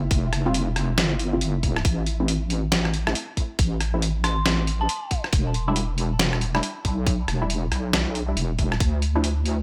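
Meditative and cavernous, this deep dubstep excerpt at 138 BPM rides a swung half-time feel, with a deep, soft wobble bass under chorus throughout, a tight, layered electronic kick and a gritty, pitched-down trip hop sampler-style kit of hi-hat, rim click and snare up front, muted dub chord stabs through phaser and dub echo moving from Fsus2 to Em7, a grainy flickering texture present until 1.9 seconds, and an eerie, inharmonic synth bell appearing briefly at 4.2 seconds, all in a light digital ambience.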